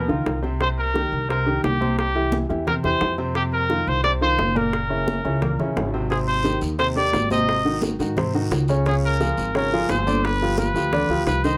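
A punchy, vintage-toned trumpet with light vibrato carries the up-front melody in this joyful, danceable salsa excerpt at 174 BPM, backed by a clear, short-sustain grand piano, a woody, thumpy pizzicato upright bass on gut strings, tight high-tuned bongos and thin-skinned congas in the background, and a raspy guiro that joins at 6.1 seconds, all captured with close, detailed microphones and light reverb.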